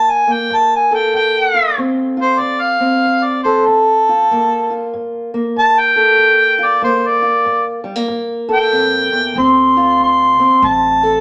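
A loping swing feel in 4/4 carries this short cut from a longer piece of acoustic country blues, soulful and smoky in mood. A mellow harmonica takes the lead throughout, playing a jazz-style solo up front with light vibrato and scooped notes that give it a vintage character. Beneath it, a fingerpicked steel-string acoustic guitar in a dark, boxy parlour voice holds the accompaniment over minor chords moving between Gm9 and Dm7. An upright bass enters only at 9.4 seconds, plucked pizzicato, its woody tone sitting low and quiet in the mix. A wet studio reverb surrounds the players, lending the small ensemble a smoky atmosphere.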